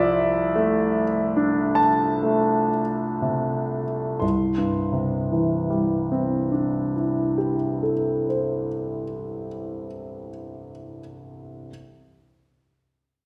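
Luminous and dreamy, this brief excerpt from a longer impressionist solo piano piece drifts in C major at a very slow 28-40 BPM in 3/4, with a free rubato feel. A bright concert grand carries everything alone from 0.0 to 11.7 seconds, ranging from C2 to C6, its deep bass and brilliant upper register sounding polished and present. Audible action noise from the instrument adds an intimate touch, and its long sustain lets the harmonies linger. The music slows down over the opening Dm7/C chord through the first phrase before settling at 4.2 seconds onto a C69 chord. A wet recital hall reverb of about 1.5 seconds surrounds the piano, giving the sense of listening from further back in the room.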